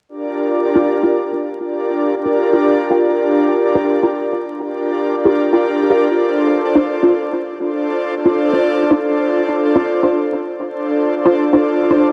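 Dark and atmospheric, this drum and bass fragment in G minor moves at 160 BPM in a straight 4/4, its harmony shifting from Gm7 to Dm7 at 6.1 seconds. An airy, breathy pad with a detuned sawtooth and noise layer holds sustained, chorused chords up front from 0.1 seconds, while a muted, deep dub chord stab enters at 0.8 seconds, its filtered pluck carrying a filter sweep, phaser, ensemble chorus, cassette tape character and dub echo. The gritty hardware sound sits in a moderate plate reverb, dusted with vinyl crackle.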